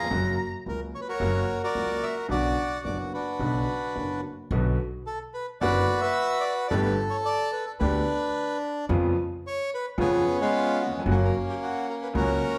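A wet studio reverb surrounds a band playing live together in one room in this tense, sultry tango fragment in B minor, taken at a rubato 110 BPM in 4/4. A reedy, dark bandoneon carries the melody up front, while a bowed violin with focused vibrato sounds only until 0.5 seconds. A woody upright piano with audible action noise and long sustain supplies warm, intimate accompaniment, and a growly, thumpy pizzicato upright bass anchors the low end as the harmony moves from F-sharp through B minor, G and C-sharp seven back to F-sharp.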